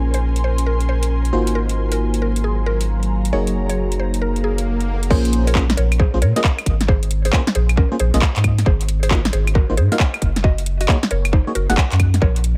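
A deep, round dub sub bass sits up front through this moody, bouncy two-step garage excerpt in Bb minor at 135 BPM, swung on the sixteenths, while glassy, bell-like FM electric piano stabs with chorus, phaser and analog delay move through Bbm9, Ab13 and Gb69, and a woody, percussive synth pluck carries the melody with chorus and delay. An ethereal, airy pad with ensemble chorus, built-in reverb and sidechain pumping drifts beneath the opening until an electronic swell enters at 4.4 seconds. At 5.1 seconds the drop arrives with a tight, up-front electronic kick joining the garage kit of woody snare, metallic hats, claves, handclaps and crash, all in a dry, echo-heavy mix with vinyl crackle.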